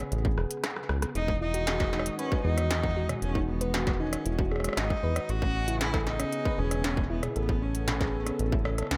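Intricate and wistful, this echo-heavy IDM fragment sets a rubbery, saturated acid bass and a distorted electronic kick beneath a clanging, crisp industrial kit whose drum fill begins at 0.4 seconds, with the kick briefly dropping out from 0.6 seconds, while a smooth analog pad pumps in the background, a harp-like synth pluck rings through chorused arpeggios, and a close, expressive bowed cello sings with vibrato and portamento from 1.2 seconds over chords moving from Amaj9 to Emaj9 and back.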